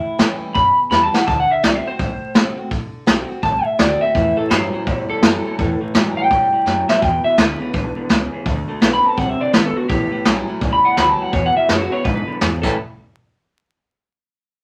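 Upbeat and rowdy, this rockabilly excerpt swings at 167 BPM in 4/4, cut from a longer piece and dusted with vinyl crackle in a moderate club reverb. A twangy, slightly broken-up electric guitar through a small old amp carries the lead up front, its lo-fi bite sitting on top of a vintage brush kit that is punchy in the kick and dark in the cymbals, with short fills at 0.9 and 6.7 seconds. A woody, thumpy pizzicato upright bass anchors the low end, while a full-bodied dreadnought acoustic guitar is picked in the background with audible finger squeak. At 4.1 seconds a second bright, picked electric guitar joins with a riff underneath the lead. The chords move through A7, D7 and E7 in a bluesy pattern before landing on A9, and the music breaks off at 12.8 seconds.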